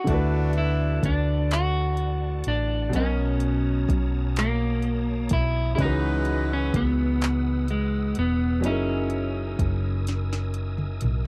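A dry, close 1970s-style studio sound frames this late-night, yearning slow six-eight R&B fragment at 42 BPM in C# dorian, where a dark, clean electric guitar carries the melody over clear grand piano with deep, long-sustaining bass notes, a reedy tonewheel organ with chorus vibrato, key click and fast rotary speaker holding high chords, a round hollow-body fingered bass up front, and an overdriven, electronic-sounding R&B kit of soft kick, sharp snare, hi-hat, toms and handclaps, while a jazz-style horn section adds stabs at 0.1 and 5.8 seconds and the drums close with a fill from 10.1 seconds over D69, Bmaj9, C#m11 and F#13 chords.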